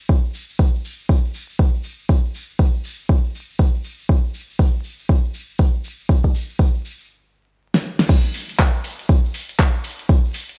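Hypnotic and moody, this short house excerpt at 120 BPM with a 60% sixteenth-note swing rides a deep, tape-warm electronic kick placed up front against a grainy, mellow tube shaker heard distant in a large room, then breaks off in a stop from 7.1 seconds, where a deep house kit with fat snare, handclaps, hi-hat and crash cymbal plays a fill from 7.7 seconds into the drop at 8.1 seconds, all dry and dusted with vinyl crackle.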